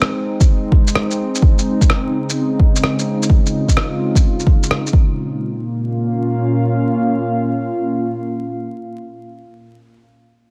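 A warbling, detuned pad carries this melancholic, rainy future garage excerpt in Bb minor at 128 BPM with a swung feel, its slow-attack sawtooth and triangle chords moving from Ab to Dbmaj7 and settling on Bbm, wrapped in chorus and reverb and pumping against the beat. Underneath, a muffled, compressed rim click and shaker play from the start, joined at 0.4 seconds by a deep, overdriven electronic kick, both dropping out by about 5.1 seconds to leave the nostalgic pad alone until 9.7 seconds. Vinyl crackle and light reverb give the whole recording a lo-fi haze.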